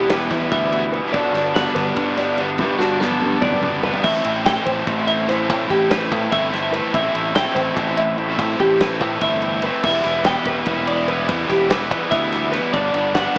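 A double-tracked, overdriven stack guitar riff sits up front in this playful, bright fragment of math rock and midwest emo in 7/8 at 290 BPM. It is joined by a twangy twelve-string electric guitar in the background playing arpeggios through harmonic tremolo, a second compressed twelve-string with spring reverb until 4.0 seconds, a punchy fingered bass, and a loose indie drum kit with dark cymbals and a rolled-off top that enters at 0.1 seconds and plays a fill from 2.8 seconds. All of it moves from Em7 and Gmaj9 to Am9 through a moderate studio reverb and a worn, warbling cassette sound like a small speaker.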